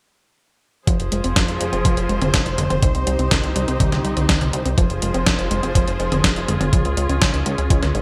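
Melodramatic and bittersweet, this short italo disco excerpt moves through a minor-key progression in a straight 4/4 feel, with a gritty, thumpy electronic kick and a clean 12-bit drum machine whose fat snare, hi-hat and toms sit up front in gated reverb. A glossy, nasal chorused synth bass carries the low end while a round analog pluck plays arpeggios in the background through chorus and digital delay. Veiled, muted strings hold sustained chords with vibrato, all framed by bright 1980s-style digital production and light reverb.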